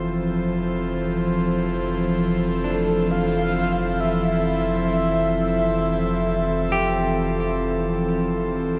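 Luminous and serene, this ambient excerpt floats in free time in F major, resting on a single Fmaj7 chord. An airy, breathy pad sits up front with sustained chorused chords, its slow attack and long release giving it a soft, hazy glow. A clean, picked electric guitar plays bright arpeggios through tape echo and gradually fades in across the whole passage, as does a deep, round sine sub bass holding a low F. At 2.6 seconds a flute-like synth lead enters with a gentle, sustained melody, its vibrato, noise layer and ensemble chorus lending it a misty shimmer. Everything is bathed in a wet cathedral reverb with a long 5.5-second tail, giving the piece a vast, weightless space.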